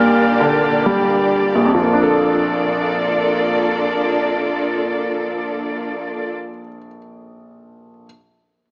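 A moderate plate reverb and a small-speaker sound color this short, heartfelt pop ballad fragment in Bb major, cut from a longer piece and moving at 64 BPM in a straight 4/4 that slows down over its first 1.8 seconds. An airy alto flute with vibrato and tape echo sits in the background for only the opening 0.9 seconds, while a bright, brilliant concert grand piano with deep bass and short sustain plays accompaniment up front until 8.1 seconds. A dark, woody string section, bowed sul tasto with lush vibrato, holds sustained chords up front until 6.3 seconds as the harmony moves from Ebmaj7 to Bbmaj7 at 1.8 seconds.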